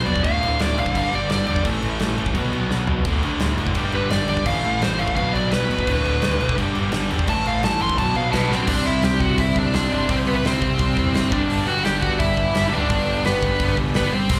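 A dark, up-front overdriven lead guitar opens this rebellious punk rock excerpt at 171 BPM in D major, soloing over biting and crunchy overdriven rhythm guitars in the background, one of them double-tracked and very quiet, while a growly overdriven picked bass and a big acoustic rock kit with a punchy kick and bright cymbals join almost at once. The lead briefly drops out and returns at 3.9 seconds as the band cycles through D, G, A and B minor with straight, energetic drive and a drum fill marking the turn. At 8.7 seconds the harmony shifts to C and then G, all heard as a live gig through the venue's PA with a touch of club reverb and slapback echo on the lead and one crunchy guitar.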